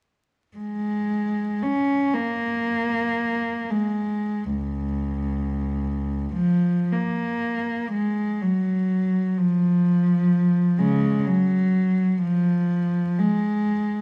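A dark, crackling recording in a reverberant recital hall carries this lyrical, nostalgic fragment of a classical piece for solo cello in Db major and 6/8, moving freely in rubato at a slow 17-44 BPM in dotted quarters. Its single bowed cello, close, intimate and up front from 0.6 to 14.0 s, plays sul tasto with light vibrato and a soft attack, ranging from Db2 to Db4 as the music turns to a new section at 4.6 s.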